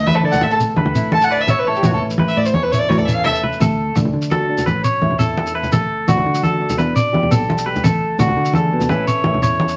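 Joyful and warm, this excerpt of a highlife guitar band in D major moves at 113 BPM in a straight 12/8, opening with a nasal, woody fiddle solo up front that stops at 3.3 seconds as a drum fill leads into the next section at 3.6 seconds, while a twangy, slightly broken-up electric guitar plays up-front arpeggios over a dark fingerpicked steel-string acoustic guitar, a round, foam-muted fingered electric bass in the background, bright congas played with soft hands and a grainy, mellow shekere, set in studio reverb with a layer of vinyl crackle.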